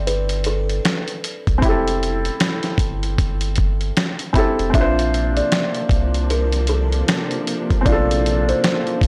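Nostalgic and cosy, this lo-fi hip hop excerpt moves at 77 BPM with a swung 16th feel in Bb lydian, as a buzzing, woody kalimba carries the melody through tape echo over a soft, muted piano with thin felt and a cassette tone. A deep, round dub sub bass and a gritty, compressed sampler-style drum kit sit up front, with a thumpy kick, snare, hi-hat and finger snaps re-recorded in a large room. At 4.7 s the harmony shifts from Fmaj9 to Bbmaj9 as a lush, bowed studio string section enters with vibrato, all within a dry, saturated hardware sound and light reverb.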